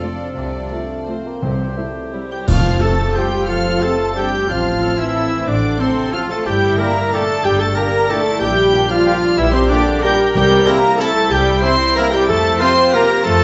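Set in a moderate, roomy stage reverb with a soft top end, this sweeping, festive orchestral ballroom waltz in F major moves in a rubato 3/4 at 162-200 BPM, its melody carried high by a rich, distant violin section playing sul tasto over a second line from clear violins, a close-miked oboe, a dark clarinet and an airy, very quiet flute ensemble. Underneath, an intimate viola section, mellow French horns, a ringing harp, dark double basses and floating cellos fill out the harmony, while a bassoon plays only until 2.5 s. Bright cymbals with bass drum mark the opening seconds alongside round, soft-mallet timpani, which return briefly around 10.3 s. A band accent at 2.5 s opens the next section, where a very quiet trombone section with a smooth top and a clear trumpet with stabs join over a progression that moves from F through G minor to C7 and home to F.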